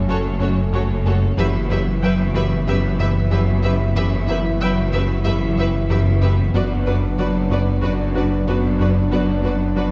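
A cinematic hybrid orchestral and electronic film score excerpt at 93 BPM in a straight 4/4, futuristic and brooding, moving from F#m through Emadd9/F# to Bm/F# at 6.5 seconds, as lush vibrato violins carry a melody and a second line over a rich viola accompaniment, with cellos and double basses holding F#, a mellow, distant French horn section and an airy, breathy pad sustain chords, a deep sub bass with octave and a rubbery, wave-folded square bass riff anchor the low end, and a very quiet glassy, crystalline wavetable pluck arpeggiates with chorus and a filter sweep, all heard from further back in a wet scoring stage reverb.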